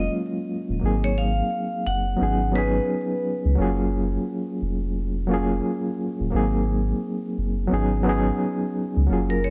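Swung sixteenths in a relaxed 4/4 give this short lo-fi hip hop excerpt a cosy, dreamy lilt. A hard-mallet vibraphone carries the melody, metallic and ringing with a slow motor vibrato, sounding from the start until 3.5 seconds and returning briefly at 9.3 seconds. Underneath, a reedy electric piano plays accompaniment throughout, lightly overdriven, pulsing with fast tremolo and softened by a low-pass filter, as if heard through its built-in speakers. A deep, round dub sub bass sits up front the whole way, sustained and soft despite its fast attack. The harmony cycles from F#maj7 through G#7 to C#7sus4/G#, all set in a small room with light reverb and the muted top end of cassette tape.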